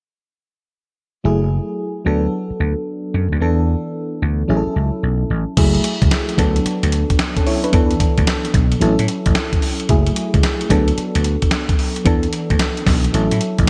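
Bright 1980s-style digital production and a lush hall ambience frame this punchy, bouncy slice of new jack swing R&B, cut from a longer piece and played with a swung sixteenth-note feel. From 1.2 seconds an FM electric piano with tremolo lays down the chords in a dark, full-bodied tone, with a noise layer and a fast attack that decays. A vintage electric slap bass sits up front beside it, growly and amped. The harmony cycles through F#m9, D6, E7sus4 and A6. At 5.6 seconds a dusty soul sampler-style drum kit arrives with a thumpy kick, a medium-tuned snare, hi-hat and crash cymbal; it is gritty and compressed, has a tape-warm character, was re-recorded in a large room and carries gated reverb, and it plays on with the piano and bass until 13.7 seconds.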